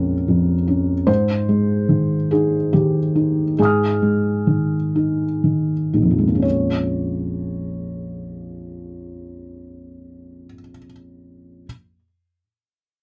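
A rubato lilt in three unfolds slowly, easing back further through the opening 6.4 seconds before a new passage begins, in this wistful, reflective fragment of a longer neoclassical minimalist piano piece. A felt-muted upright piano plays alone throughout, its dark, intimate tone shaped by thick felt and audible action noise, ranging from deep bass to high treble. The instrument sits up front in a dry, close 1970s-style studio sound touched with light reverb.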